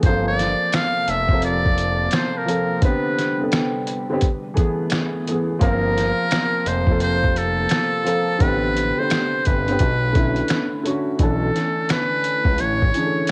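A swung 4/4 groove at 86 BPM drives this hazy, reflective stretch of lo-fi hip hop, carried by a sampler-style kit whose thumpy kick, fat snare, hi-hat and finger snaps sound compressed, pitched down, muffled and overdriven through cassette tape, sitting up front as if re-recorded in a small room. Beneath it, a fat analog bass with a nasal, detuned sawtooth-and-square character and a quick filter pluck holds the low end until 12.9 seconds, while a soft, felt-muted upright piano plays intimate, mellow accompaniment, its tone dulled by tape and a low-pass filter. A very quiet, warbling pad sustains chords in the background, its slow attack, long release, chorus and phaser lending a nostalgic shimmer. From 0.1 seconds a trumpet with a metal mute takes the solo melody in a jazz style, buzzy and thin yet brilliant, with breathy tone, light vibrato and scooped notes, filtered and taped like the piano. 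The harmony moves through Gm11, Am11, Eadd11 and back, landing on Bm11 at 9.8 seconds before a new section opens at 11.2 seconds, all wrapped in moderate spring reverb and a homespun cassette sound, cut from a longer piece.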